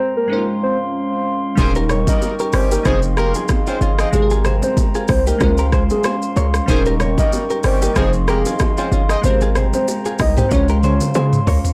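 A blown-out, overdriven sound with light reverb frames this sunny, romantic afrobeats passage in Ab major, cut from a longer piece and moving at 94 BPM in 4/4 with a gentle swing on the sixteenths. It opens with a short break in which a round, dark octave-layered synth lead carries the melody with chorus, vibrato and tape echo, over glassy digital keys with chorus and a filter sweep and the pure, ethereal sustained chords of a glass harmonica. At 1.6 seconds the groove arrives: a punchy, heavy 808-style bass with transformer saturation sits up front beside an electronic afro-pop drum kit of deep kick, crisp hats, rim click, shaker and toms, its snare softly clipped, while very quiet, distant congas and bongos sound from a large room. A loose pop-style horn section with light vibrato and octave doubling adds a second line, and a bright, clean, direct-recorded electric guitar picks a compressed riff through spring reverb and tape echo. 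The harmony cycles through lush seventh and ninth chords, Dbmaj7, Eb7, Fm7 and Abmaj9, and a drum fill at 10.5 seconds closes the passage.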